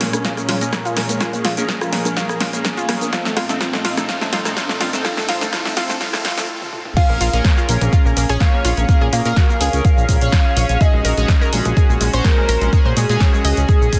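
A layered, deep electronic kick drum sits up front in this expansive, emotional progressive house excerpt at 125 BPM in Bb minor, driving a deep house kit with a punchy snare while a warbling vintage analog pluck plays arpeggios and a glossy chorused polysynth stabs chords, both filter-swept and trailed by tape echo. For the first 6.5 seconds, lush bowed strings hold sustained chords beside a very quiet riser and background rim click and congas, building through drum fills to a brief stop. At the drop at 7.0 seconds, a thick, dark unison lead carries the melody from the background with a pure FM bell tracing a gentle second line, and a moment later a fat, detuned analog bass pushes up front, the bass and lead both pumping with the kick.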